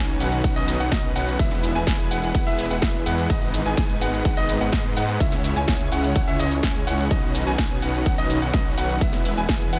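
A straight 4/4 pulse at 126 BPM, driven by a punchy, up-front electronic kick and a layered big-room dance kit of snare, hi-hat, ride cymbal and shaker, carries this euphoric, uplifting festival progressive house passage in B major, where huge detuned supersaw chords play a riff with digital delay, a bright grand piano spins arpeggios with delay, a thick, menacing detuned saw bass pumps below, and a warbling vintage unison pad with chorus holds sustained chords in the background, all four pumping against the kick through a Badd9, E, G#m and C#m progression in a dry sound.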